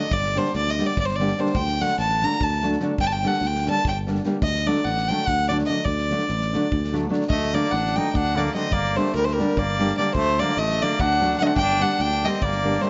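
Striding in a straight 7/8, this restless, bittersweet Balkan wedding-band folk excerpt puts a single biting, nasal violin up front over a fingerpicked nylon-string guitar, a growly fingered electric bass alternating G minor and D, and a very quiet, loose drum kit of kick and snare, while a distant classical trumpet with light vibrato adds a second line from 7.3 seconds, all in a moderate recital-hall reverb with a dulled top end and a faint mains hum.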